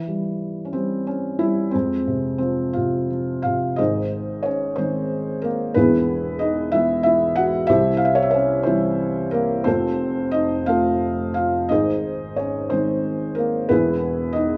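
A felt-muted upright piano plays alone, up front and intimate with a dark, thick-felt softness, in this melancholic, reflective fragment of a lyrical classical solo piece in F harmonic minor, moving with rubato in 6/8 at 60 BPM by the dotted quarter, spanning E1 to Gb5 in a moderate recital-hall reverb, and opening on Em6 and Fm before a second section from 3.8 s wanders through Ab, E, C and F, returning to Ab and closing on E.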